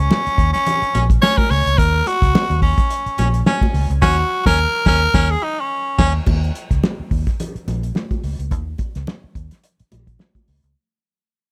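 A raspy, gritty tenor saxophone opens this short funk excerpt with a bright, punchy solo, joined at once by a vintage, foam-muted fingered electric bass that sits round and up front, while a cloth-damped drum kit and congas come in almost immediately. The mood is cool and hypnotic, with a lightly swung sixteenth-note feel. The drums sound thuddy and dry, with a fat snare, tight kick and dark cymbals under a rolled-off top. The high-tuned congas, struck with hard hands, ring thin-skinned from a distance as though in a large room. A clear baritone saxophone adds a present second line alongside the solo, and the band hits an accent from 4.0 seconds before both horns drop out near 6.2 seconds. From 6.3 seconds the remaining rhythm section fades out, all within a small room ambience.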